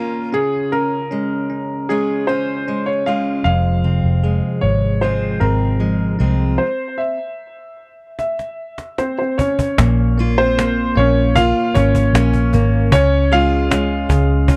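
Heartbroken and emotional, this slow pop ballad at 76 BPM in 4/4 opens in Db and moves through Fm, C and Bbm before coming back to Db. A clear concert grand piano with a deep low end carries the melody up front, its line touched by tape echo, while a bell-like, bright tine electric piano supplies clean accompaniment and a fingerpicked steel-string acoustic guitar adds warm arpeggios with audible finger squeak. A dark, round, foam-muted electric bass with a punchy, amped tone joins at 3.5 seconds and sits prominently in the mix. During a stop that begins at 6.6 seconds, a snappy cajon with snares enters at 8.2 seconds with a fill that leads into a new section at 9.8 seconds. The sound is dry and close, like a 1970s studio session, and the passage is cut from a longer piece.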